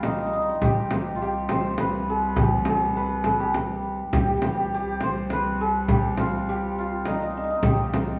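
A mellow, shimmering santur carries the melody from the first moment, while a rich cello sustains a low bowed drone with vibrato and portamento beneath it, and a deep frame drum sits close and dry up front in a stately triple metre. This short passage of Persian modal ensemble music feels passionate, captured as a band playing live in one room with a large, wet studio reverb.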